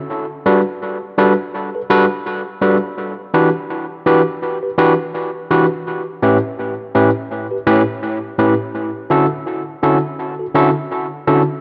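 Sweet and smooth, this short reggae passage, cut from a longer piece, features a lone tine electric piano with a gently swung sixteenth-note lilt, entering at 0.5 seconds and playing until 11.4 seconds. Its bright, barky tone is driven into gritty overdrive through a combo amp and sits up front, trailed by tape echo. The chords move from Gmaj7 through Em7 and A7 to Dmaj7, all bathed in a moderate echo chamber reverb.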